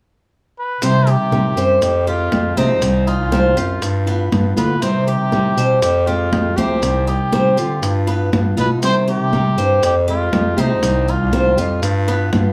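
A straight, danceable 4/4 groove in the Cuban son and guajira style drives this cut from a longer piece. High-tuned congas sound bright and distant, as if in a large room, while tight bongos played with soft hands sit close and dry, and grainy, mellow maracas add texture, with the drums kept in the background. A cup-muted trumpet enters at 0.6 seconds and carries the melody in a veiled, jazz-inflected voice. From 0.8 seconds a clear bass clarinet in a classical style sits up front to anchor the low end, and a small, warm-toned nylon-string guitar adds fingerpicked accompaniment. A Cuban tres picks metallic arpeggios on its double strings, some of them octave-doubled, over a repeating cycle of Cm, Fmadd9 and G7, all set in a moderate studio reverb with a small-room feel.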